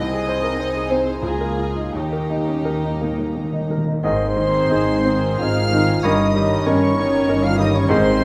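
A clear, up-front baby grand piano carries a lyrical, passionate melody in a rubato triple metre, joined from the start by a full string body in this short classical passage cut from a longer piece. High violins float a pure, soft-edged line above the piano while a second violin part adds a supporting voice, dark woody violas with vibrato fill in the harmony very quietly, and cellos and double basses, bowed sul tasto, anchor the low end. At 1.9 seconds a timpani fill with medium mallets enters on a single low pitch, closing out the first phrase. At 4.0 seconds the music opens into a fuller second section as winds and brass arrive: a clear solo oboe, a mellow, distant clarinet and an airy flute ensemble trace second lines, a bassoon with light vibrato holds a steady accompanying note, and dark, roomy French horns and very quiet trombones sustain chords beneath soft trumpet stabs. A wet scoring-stage reverb surrounds the orchestra, placing most of the winds and brass in the background behind the piano and strings.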